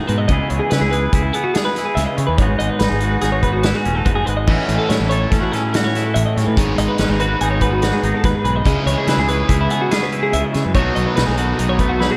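A big arena sound with a lush hall reverb frames this playful, wistful cut of math rock and midwest emo, moving at 144 BPM in a straight 5/4 over chords such as C#m7, G#m7, A6 and B7. A warm, compressed twelve-string electric guitar spins arpeggios up front alongside a bright, clean twangy electric guitar washed in spring reverb, while a fuzzy, punchy fingered bass with overdrive and a roomy, distant indie drum kit with a rolled-off top drive the odd meter. At 4.5 s a double-tracked, crunchy overdriven guitar joins with a riff, and a drum fill at 12.0 s closes the section.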